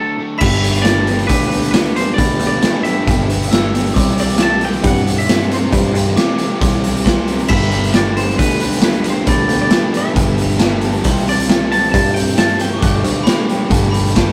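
A straight 4/4 beat at 135 BPM drives this jangly, upbeat indie rock excerpt in G major, with a gritty, punchy garage drum kit up front in a bright stone room and a growly, foam-muted picked bass entering at 0.4 seconds alongside a sparkling glockenspiel struck with brass mallets in the background. A twangy, compressed clean electric guitar carries the melody over an overdriven semi-hollow guitar riff bathed in spring reverb and a very quiet lo-fi garage guitar riff, as the chords move through G, Cadd9, Gadd9 and Gsus2. From 7.5 seconds a very quiet, flute-like tonewheel organ adds soft sustained chords through a rotary speaker, all captured as a rough rehearsal-room recording with light reverb and saturation.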